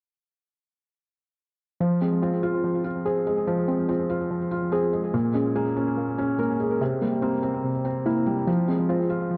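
Dark and ominous, this short hip hop fragment, cut from a longer piece, moves in a half-time feel over a brooding minor progression. A felt-muted upright piano carries the accompaniment from 1.8 to 9.4 seconds, its mellow, intimate tone softened by a low-pass filter and trailed by tape echo, with the noise of its action audible up close. Alongside it for the same span, muted felt-like synth keys play arpeggios, blending triangle and sawtooth tones with a noise layer, a filter sweep and a chorus shimmer, each note striking quickly and then decaying. Both keyboards sit up front, yet the echo-heavy mix wraps them in a moderate echo chamber reverb and a small room, giving the hushed playing a shadowy depth. The chords pass from Fm through Bbm7 and C7 before settling back on Fm at 8.5 seconds.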